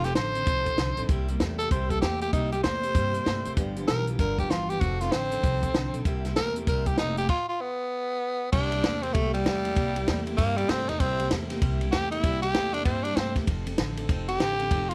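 Swung eighths drive this rollicking, rowdy rockabilly excerpt, where a raspy, growling tenor saxophone sits up front with vibrato over a thumpy, woody pizzicato upright bass, a dry compact cocktail kit with dark cymbals, a high-tuned snare and punchy kick, a picked full-bodied dreadnought acoustic guitar with finger squeak in the background and a twangy, compressed clean electric guitar riff washed in lush chorus, all in a light small-room ambience, until a stop at 7.3 s sets up the saxophone's solo from 8.5 s.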